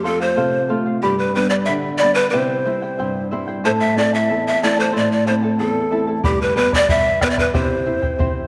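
Large cane pan pipes carry the melody up front, breathy and bright with a crisp, chiffy attack, lifted highs and an unsteady vibrato that gives this short Andean folk excerpt a wistful, earthy character. Beneath them, a fingerpicked charango adds a mellow, shimmering layer from its double courses, some strung in octaves, while a small, fingerpicked nylon-string guitar sits close and warm in the lower register. The tempo is a moderate 92 BPM in a straight 2/4, moving through F, G, C and A minor before the opening phrase returns. At 6.2 seconds a round, vintage-sounding bombo enters with a band-limited thump, then drops out at 8.3 seconds. A generous scoring-stage reverb and a dark production wrap the ensemble in a soft, spacious glow.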